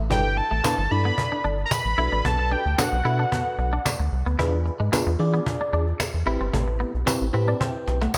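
Early-eighties boogie funk at 112 BPM in a straight 4/4, this short, feel-good excerpt is built for dancing, moving through G6/9, Bm7, E7b9 and Am7. A rubbery, hollow square bass sits up front with a bouncy, nasal filter pluck, while a bright, twangy clean electric guitar picks a compressed riff through analog chorus. A fat, detuned sawtooth lead with a sub octave and filter sweep carries the melody through digital delay, stopping at 3.9 seconds. A mellow FM electric piano with tremolo and phaser fills in the harmony and adds a fill from 7.1 seconds. A snappy, vintage cajon played with soft hands keeps time and adds a fill near the end, joined by a jingly, close and dry tambourine from 0.6 seconds. A moderate plate reverb frames the bright 1980s-style digital production.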